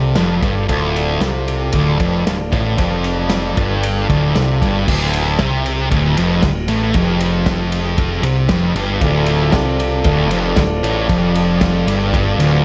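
Menacing and swaggering, this short garage rock cut in D minor at 115 BPM is driven by a thick, double-tracked fuzz guitar riff sitting up front, a growling overdriven bass, and a muffled, lo-fi vintage drum kit with a punchy kick and dark cymbals in a small room, while a reedy combo organ drifts in the background with lush chorus and plate reverb, dropping out at 4.8 seconds and returning at 9.0 seconds.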